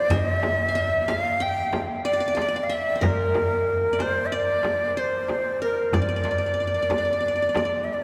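A breathy, reedy ney carries the longing melody up front with vibrato, joined from the start by a bright-edged, plectrum-plucked qanun on a second line, while a crisp, saturated metal-shell darbuka and a deep, close frame drum, both played with soft hands, enter at 0.1 s to drive this hypnotic Turkish makam ensemble passage in D makam ussak at 185 BPM in eighths and 9/8, set in a long cathedral reverb and cut from a longer piece.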